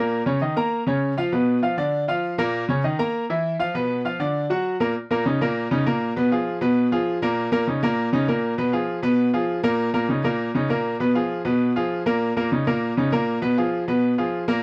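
Passionate and danceable, this short latin excerpt, cut from a longer piece, moves at a brisk 198 BPM in straight 4/4 and sits in Eb minor, tuned slightly low to A4 = 439 Hz. A bright baby grand piano plays solo throughout, spanning Bb2 to Bb5 with a brilliant, open tone and long sustain placed up front. The opening stretch runs through restless harmony, from Bbmadd11 through Bdim, Bb and Bbaug, before settling at 5.0 seconds into a second section. From there the chords alternate steadily between Eb5 and Abm69, giving the passage a hypnotic, circling pull until it ends at 14.6 seconds. A light reverb touches the piano, while the dry, close 1970s-style studio sound keeps it intimate and immediate.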